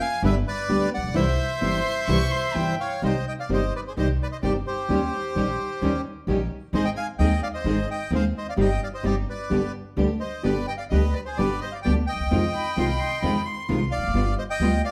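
A rubato tango in 4/4 at 130 BPM, this tense, dramatic excerpt settles into C harmonic minor at 3.0 s after an opening that moves from G to C. An up-front, close-miked bandoneon carries the melody with a reedy, full, dry voice, while a nylon-string guitar supplies fingerpicked accompaniment, its fresh strings giving a full-bodied, deep classical tone with audible finger squeak. An upright bass plucks a woody, dark bass line, and a distant symphonic string section, biting and intense with light vibrato, punctuates the background with bright bowed stabs. A solo violin enters at 1.6 s and returns at 12.5 s as an expressive second line, bowed close with vibrato, a soft attack and portamento. The band plays live together in one room, set in a large studio reverb, as the harmony travels through Eb7, Ab and Fm7 before resting on G7.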